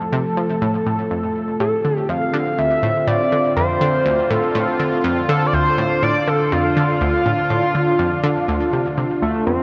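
A straight, steady 4/4 pulse drives this short passage of ambient, sequencer-driven space music, cut from a longer piece and carrying a cosmic, expansive mood. From the opening, a sweeping resonant pad holds sustained chords on F, its detuned sawtooth tone evolving through a slow-attack filter swell and long release, with a chorus effect. Almost at once an analog pluck, round and up front, sets out a low riff; its fast attack and short decay blend sawtooth, square, triangle and a noise layer with ring modulation and a filter sweep, all treated with chorus and tape echo. At 1.6 s the harmony moves to Dm7 as a shimmering pulse-width lead enters with a retro, warbling melody, its vintage bright tone sustained with vibrato, chorus and tape echo, and it sits a little above the other parts. A huge, wet ambient reverb with an 8.3-second tail envelops the mix, and the top end rolls off above 10.9 kHz.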